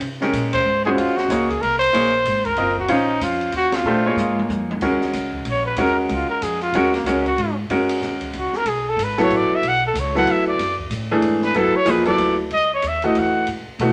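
Woody pizzicato upright bass and an open jazz kit with dark cymbals, a high-tuned snare and a boomy kick start this hypnotic, intense modal jazz piece, cut from a longer performance, at 187 BPM in a swung 3/4, joined almost at once by a bright, brilliant upright piano and a warm, soft-attacked trumpet with vibrato, both up front, and after band accents and a drum fill the trumpet takes a solo over Eb phrygian harmony from 4.8 s, all set in wet studio reverb.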